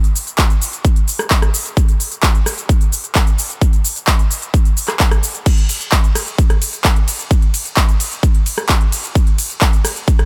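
A layered big-room dance drum kit of crisp hats, handclaps, shaker, rim clicks and ride and crash cymbals, re-recorded in a small room, opens this anthemic, uplifting EDM drop cut from a longer piece, and a punchy, up-front electronic kick joins it almost at once, all in a straight 4/4 with little reverb.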